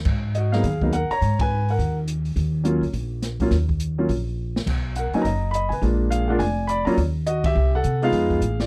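A warm concert grand piano carries the melody up front in this smoky, cool jazz piano trio excerpt, swinging at 208 BPM in Eb minor over a woody, dark pizzicato upright bass and an open drum kit with dark cymbals and a boomy kick. The band hits accents at 1.4 and 7.4 seconds, with a drum fill at 4.4 seconds, as the chords move from Ab7sus2 through Bmaj7, Bb7 and Ebm to Fm7b5. The dry, close 1970s-style studio sound keeps the trio intimate and immediate.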